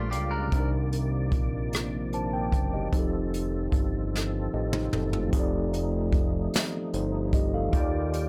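Slow six-eight R&B at 50 BPM with a sultry, yearning mood, drifting through Gm7, Cm9, F7, F13 and Ebmaj9. A mellow tine electric piano and a fat, detuned sawtooth analog bass with a filter sweep sit up front, while a gritty, overdriven tonewheel organ holds sustained chords through chorus vibrato and a slow rotary speaker. A bright, twangy clean electric guitar appears only briefly until 0.7 s, and an acoustic brush kit with a boomy kick plays a drum fill from 4.1 to 5.3 s, all in a dry, close-sounding space.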